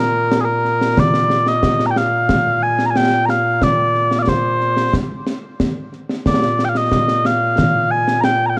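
Scottish traditional pipe music with a ceremonial, stirring mood, this brief cut from a longer piece features mellow, sweet small bagpipes carrying a continuous, vibrato-tinged melody up front from the opening, joined at 0.3 seconds by concert snare and bass drum with bright cymbals and an acoustic, live-room presence, all set in light reverb with the worn, warbly pitch drift of old cassette tape.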